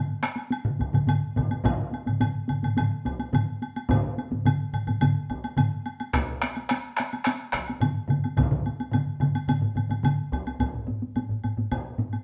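A solo taiko drum part struck with heavy sticks sounds through this short passage of Japanese traditional taiko ensemble music, its tone close and dry. Alongside it, four taiko ensemble parts played with hard sticks fill out the texture, one of them entering at 0.8 seconds: one is heard close, one in a small room, and one distant in a large room yet still up front in the mix. A woodblock with a woody, compressed and saturated tone runs through the passage from 0.2 to 12.2 seconds. The mood is ceremonial and powerful, moving at 107 BPM in a straight 4/4, with the band playing live together in one room under a wet studio reverb. The passage is cut from a longer piece, with one taiko ensemble part stopping at 10.2 seconds and a new section arriving at 10.6 seconds.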